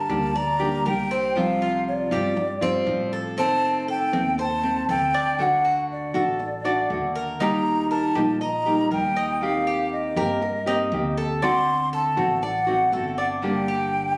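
Danceable and nostalgic, this Latin fragment moves at 119 BPM in a straight 4/4, with a breathy, mellow concert flute carrying the melody up front, its vibrato and crisp attack sounding close and expressive. A full-bodied nylon-string guitar, fingerpicked with audible finger squeak, accompanies through a minor-key progression from Gm through Adim, D and Eb to D7. A Cuban tres adds picked, metallic double-string arpeggios, and a pizzicato upright bass thumps beneath on dark, woody gut strings, all captured on a phone in the room with club reverb and compression.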